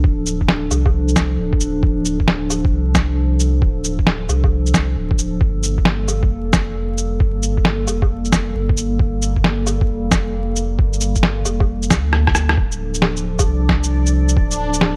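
Melancholic and wistful, this future garage piece at 134 BPM in D minor sets a warbling, lo-fi pad's sustained chords, colored by chorus, reverb and sidechain pumping, over a deep, round sub bass with tube saturation, while a muffled, thumpy kick and up-front, pitched-down shaker, snare, woodblock and rim click drive a swung 16th-note groove through vinyl crackle, with a drum fill at 12.1 seconds and a dreamy, bright, backwards swelling texture entering at 13.4 seconds.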